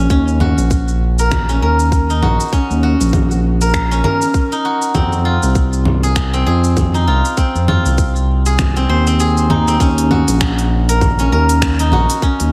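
Light reverb and a digital ambience give this mystical, hypnotic organic downtempo excerpt a softly spacious sound, with the drums carrying a tape-warm tone from being re-recorded in a large room. At 99 BPM in 4/4 with a 58% swing on the sixteenths, a steel-string zither plays ringing, silvery arpeggios up front, picked with fingerpicks and trailed by tape echo, in a tuning set to A4 = 439 Hz. Beneath it, a smooth, gliding synth bass blends sawtooth and triangle waves with wave-folding, a fast attack, vibrato and portamento, and its sustained notes pump against the sidechain. A tight electronic kick anchors the groove alongside a quieter organic electronic kit of congas, finger snaps, crisp hi-hats and shaker. The harmony moves from Ebm7 to Fm7 at 5.0 seconds, and the kick drops out from 9.2 to 9.8 seconds before the music settles back on Ebm7 for a new section.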